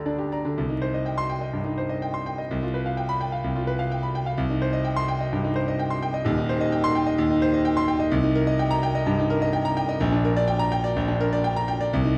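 Classical virtuoso piano study in C minor, stormy and passionate at 127 BPM in 4/4 with a rubato feel, played on a solo grand piano whose clear, smooth, vintage tone with short sustain sits up front, spanning Eb1 to C6 and turning toward G minor from 8.1 s, all set in a wet recital hall reverb under a layer of vinyl crackle, in a passage cut from a longer piece.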